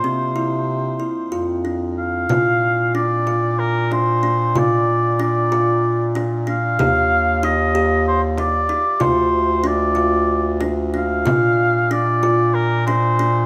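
Contemporary chamber music in an uneven 7/8 meter, this restless, playful excerpt is cut from a longer piece. An oboe carries the melody with vibrato in a classical style, sounding somewhat distant and roomy even as it sits up front. Beneath it, a kalimba plays ringing, woody arpeggios with a bright thumbnail pluck and a hollow-box resonance, while a bass clarinet plays the low line in a warm, classical manner. A small frame drum joins at 2.3 seconds, played with soft hands and heard close and dry in the background. The harmony moves from C through Dm/F into Bb, Ebmaj7 and Dm7 before returning to Bb, captured with close, detailed microphones and light reverb.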